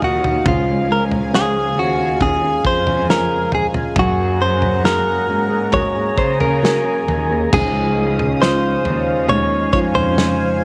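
Pop ballad with an emotional, tender mood, heard in a short passage cut from a longer piece. A clean, compressed electric guitar, recorded direct and sitting up front with a slapback echo, carries the picked melody. Beneath it, a fingerpicked steel-string acoustic guitar with old strings gives woody, full-bodied arpeggios, while a felt-muted upright piano adds soft, mellow accompaniment in the background. A lush, detuned sawtooth pad with chorus holds bright sustained chords over a bowed cello section, whose smooth, even vibrato supplies the bass. A loose indie drum kit with dark cymbals, a tight kick and a rolled-off top plays in a small room until 10.4 s, and a new section begins at 7.5 s.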